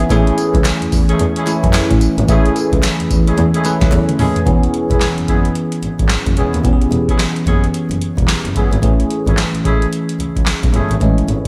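Bathed in a lush hall reverb with a big arena sound, this upbeat, bouncy new jack swing excerpt at 110 BPM in E major rides on a booming analog drum machine with a deep kick, crisp snare and metallic hats up front, a rich bowed double bass full of vibrato and portamento, a barky, bell-like tine electric piano treated with phaser and slapback echo, mellow jazz-style horn stabs doubled in octaves with delay, and a barely audible group handclap from 0.6 to 4.1 seconds, with a drum fill at 3.9 seconds leading into the second section at 4.5 seconds.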